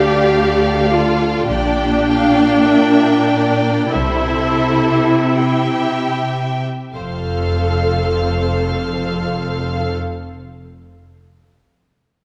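A slow, lyrical classical movement for string orchestra opens with the full ensemble bowing together from the first moment, all five sections sounding from 0.0 s in an unhurried rubato. The violins carry the melody high in their range with a smooth tone and light vibrato, while a second violin line sits behind them, intense yet distant. The violas, the most prominent voice, sound rich and up front, their soft attack lending an expressive, lush body to the accompaniment, and the cellos underpin them with a clear, focused bass line. Beneath the cellos the double basses add a bowed foundation with a smooth top, and the whole passage moves from D minor through G minor and C, slowing down until it settles on F major at 6.9 s, where a new passage begins. A wet concert hall reverb surrounds the strings, giving this short extract from a longer piece its spacious, warm character.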